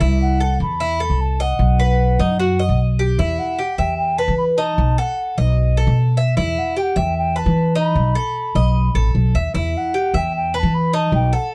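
From the first moment, a reedy, airy clay alto ocarina sings a distant, vibrato-touched melody over a bright, metallic Cuban tres picking arpeggios on its doubled strings and a woody pizzicato upright bass set up front, forming a sultry Cuban son and guajira at 151 BPM in 4/4 that settles into E harmonic minor from 3.2 s, heard in a dark, warm, dry production cut from a longer piece.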